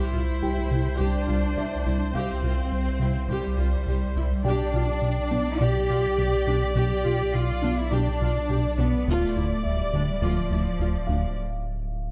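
Brooding and relentless, this cinematic cue blends orchestral strings with electronic bass in a dark, warm production, moving at 104 BPM in a straight 4/4. A round analog bass carries the riff with a deep, wave-folded tone and a filter pluck, sitting over a thick, saturated sub bass that holds down the lowest register. Bowed strings fill out the harmony: a smooth, lightly vibrato viola section in accompaniment, an even cello section placed up front, and a lush symphonic double bass section with expressive vibrato in the background. A felt-muted upright piano adds a soft, boxy, intimate texture high above, touched with digital delay and set back in the mix. The chords move from C to G/B to Dm, and the strings and analog bass drop out by 11.4 seconds, leaving the sub bass and piano in a brief break until 12.1 seconds, all within a moderate scoring stage reverb.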